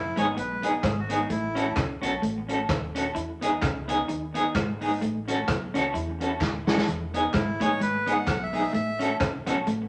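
A swung 4/4 ska groove at 129 BPM in E major, cut from a longer piece, rocks between Emaj7 and A6 with a joyful, cheerful bounce, driven by a roomy, distant big-band drum kit with a punchy kick and a fill at 6.4 seconds, woody, growly pizzicato upright bass, and hollow group handclaps in the background. A twangy, compressed clean electric guitar plays the riff through tremolo and dub echo, while an up-front, fingered semi-hollow electric guitar with its own tremolo carries the accompaniment. A reedy, breathy, close-miked melodica states the melody at the start and returns at 7.3 seconds, the mix sitting in a wet studio reverb.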